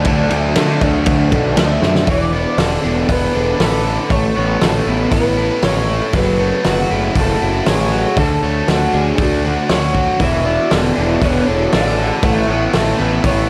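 A wistful, hazy shoegaze and dream pop rock passage at 118 BPM in a straight 4/4, cut from a longer piece. A loose indie drum kit with dark cymbals and a fat snare sits up front beside a punchy fuzz bass, while two biting overdriven guitar riffs, one with lush chorus and one with reverse reverb, hang in the background, joined by a bright, double-tracked garage guitar with phaser that drops out at 2.1 seconds and returns at 10.2. Entering at 1.6 seconds, just before a drum fill at 1.8, a twangy, slightly broken-up lead guitar carries the melody through subtle chorus and tape echo over chords moving from E7sus4 through Aadd9, F#m7 and Dmaj7, all in a light reverb.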